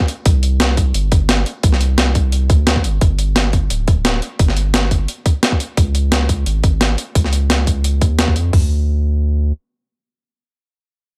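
Liquid drum and bass at 174 BPM in a straight 4/4, this dreamy, warm cut pairs two up-front drum kits: an electronic, layered kit with a tight kick, toms and metallic hats, and a gritty, compressed, tape-warm sampler-style breakbeat kit with a medium-tuned snare and hi-hat, both carrying a small-room ambience. A deep, thick, saturated sub bass with a fast attack and sustained notes enters at 0.3 seconds and runs from D1 to E#2. The drums drop out around 8.5 seconds as a new section begins, leaving the bass to hold on until 9.5 seconds in a dry mix.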